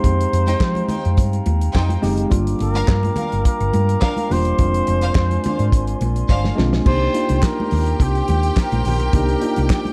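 A dark, lightly reverberant studio sound frames this sultry, glamorous disco excerpt in C minor at 106 BPM, where a distant, roomy flugelhorn sings a vibrato-laden jazz melody over a worn, slightly out-of-tune tine electric piano, a round, amped hollow-body bass and a dry, up-front 70s kit with fat snare, tight kick, handclaps and dark cymbals, while very quiet ringing congas, an ethereal glass harmonica in the background and a rich bowed violin section entering at 0.5 seconds fill out chords moving from Fm9 through Gm7 and Bb9/F to Cm7, with a drum fill at 6.3 seconds leading into a new section.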